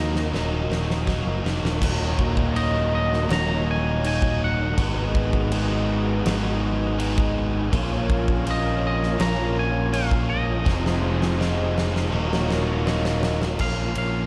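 A dreamy mix soaked in plate reverb gives this brooding, hazy shoegaze and dream pop excerpt in Eb minor at 81 BPM its blurred glow. A huge arena drum kit with a punchy kick, fat snare, crash and ride plays an opening fill through 1.8 seconds and another from 10.7 seconds, while two overdriven electric guitars share a low riff: one compressed and up front with subtle chorus, the other in the background with reverse reverb, over a direct, bright picked bass that sits forward. A clean, scooped, twangy guitar carries the melody through analog delay above a brassy, detuned sawtooth pad with chorus and vibrato, as the chords move from Ebm7 through Abm7, Bbm7 and Fm7.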